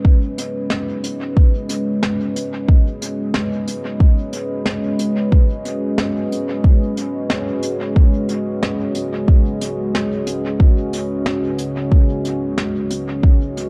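The electronic kick drum stands out most, a deep, layered, tape-warm thump sitting up front from 0.0 s to 13.4 s in this spacious, meditative ambient dub piece at 91 BPM in a straight 4/4. Beneath it, a deep, moody pad built from detuned sawtooth and sine voices with a sub octave holds sustained chords from C#3 to D#5, its slow attack and long release softened by chorus and its own reverb. A soft brush drum kit enters at 0.4 s, playing hi-hat and a medium-tuned snare with a smooth, rolled-off top in a small-room sound, carried on a dub echo. The harmony rests on C#5 before moving to C#9sus4 at 8.0 s. The whole piece sits in a dark studio reverb, and the clip is cut from a longer work.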